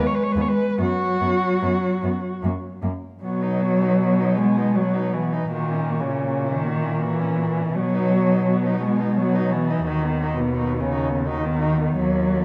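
Serene and lyrical, this classical excerpt for four muted cellos moves in a rubato 3/4 at 71-87 BPM in B major, its harmony settling onto B at 3.2 seconds before passing through F#7/A# and B/D#. All four bowed, con sordino cellos share a dark, veiled vibrato: the melody has a smooth top, the close second line sits in the background, the accompaniment stands up front, and the distant bass glides with portamento and a soft attack. A wet recital hall reverb wraps the ensemble in a long, hazy glow.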